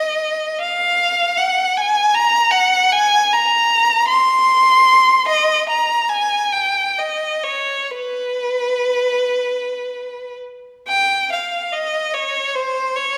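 Lonely and mournful, this brief classical excerpt for solo violin moves freely in 6/8, its rubato pulse drifting between 32 and 53 BPM in dotted quarters. The single bowed violin sits up front, singing between Cb5 and C6 with a rich, focused tone, a smooth top and expressive vibrato, and the line shifts into a new section at 10.9 s before the clip ends at 13.2 s. A wet recital-hall reverb with a 1.4-second decay surrounds the instrument, giving it the spacious sound of a church or concert hall.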